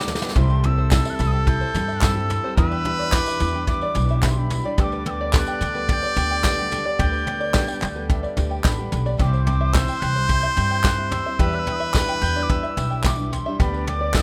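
A mellow mid whistle carries the melody from the first second, its airy metal tone marked by vibrato, tongued chiff and rolled-off highs, while a clear, distant trumpet plays a second line in a classical style beneath it. This nostalgic, hopeful indie folk excerpt moves at 109 BPM in a straight 4/4, opening with a brief drum fill on a soft brush kit that sits up front with a tight kick and medium-tuned snare. A woody, thumpy pizzicato upright bass on gut strings anchors the low end, and in the background a picked steel-string acoustic guitar and a twangy, plunky fingerpicked open-back banjo add accompaniment and arpeggios, with a very quiet grand piano contributing intimate accompaniment and audible action noise. From 0.4 seconds a reedy, nasal hand-pumped harmonium breathes sustained chords and a jingly, vintage tambourine joins far back, followed by crisp, close group handclaps at 0.9 seconds as the arrangement builds. 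The harmony cycles through C, Em7 and G/D, and the dry sound has the rough character of a home demo mix.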